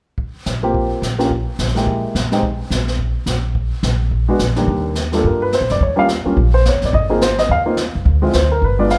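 Brushed snare and hi-hat open this excerpt at 0.2 s, with a boomy kick underneath, and a woody, growly pizzicato upright bass and an intimate, up-front baby grand piano join almost at once. The result is a playful, sophisticated jazz piano trio swinging briskly at 213 BPM in 4/4 in Eb major. The piano's short sustain and audible action noise sit in a moderate recital-hall reverb, and the harmony moves from Bbsus2 to a new section at 4.7 s that passes through Ebmaj9, Eb7sus2, Ab6 and D7(no3).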